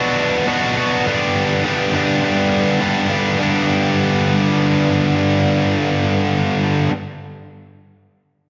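A moderate scoring-stage reverb with a 2.1-second tail surrounds this short rock fragment, and its top end is rolled off above 7.5 kHz. A single high-gain electric guitar carries it alone from 0.0 to 6.9 s, distorted, picked and double-tracked, sitting up front with a bright edge across a range from G2 to G4. The mood is jangly and upbeat, moving at 102 BPM in a straight 4/4 in G major. The harmony opens on Bm and shifts to G at 1.1 s, and a second passage begins at 3.4 s. Cut from a longer piece, it captures a brief moment of bright, distorted guitar tone in a roomy space.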